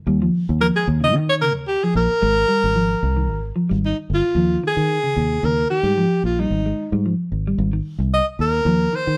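Afrobeat at 112 BPM in 4/4 with a straight feel, this short excerpt cut from a longer piece sits in Eb mixolydian and carries a hypnotic, joyful mood. A clean, picked semi-hollow electric guitar with a dark hollow-body tone plays arpeggios from 0.1 s, alongside a fingered electric bass that sounds round, foam-muted and direct, sitting up front. At 0.6 s a breathy alto saxophone enters with the melody, close-miked and intimate, its soft attack and scooped notes giving a whispered, pop-style solo voice that leads the mix. The harmony moves from Ebsus2 to Abmaj9, then through Eb9sus4 and Abmaj7 before returning to Ebsus2, with a second section starting at 4.4 s. The trio sounds like a band playing live in one room, touched by light reverb.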